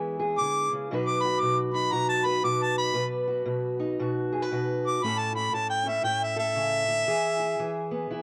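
A home cassette recording with a moderate spring reverb gives this short excerpt of acoustic country blues a lived-in, slightly hazy room sound. The mood is laid-back and swaggering, with a swung 4/4 feel that moves through E, B and A before landing back on E at 7.1 seconds. A dark, boxy parlour steel-string guitar, fingerpicked and up front, carries the accompaniment from the first moment to the last. Over it, a close-miked harmonica enters at 0.4 seconds and plays between E5 and D6, delivering a jazz-inflected solo melody with light vibrato, scooped notes and a soft attack. The harmonica's bright, forward tone rides just above the guitar, so the pair sounds like an intimate duo caught mid-tune.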